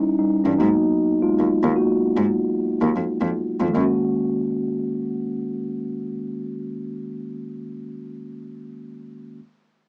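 This home cassette recording has a small-speaker sound, light reverb and the ambience of a small room, framing a smooth, warm neo-soul and R&B passage cut from a longer piece, with a swung sixteenth-note feel. A mellow, clean tine electric piano, coloured by cassette tape and heard through its built-in speakers, sits up front, moving from D#7b9 to G#m7 and later settling on F#6. A single close, bowed cello enters as the bass at 0.5 s with a soft attack, vibrato and expressive portamento before stopping at 3.8 s.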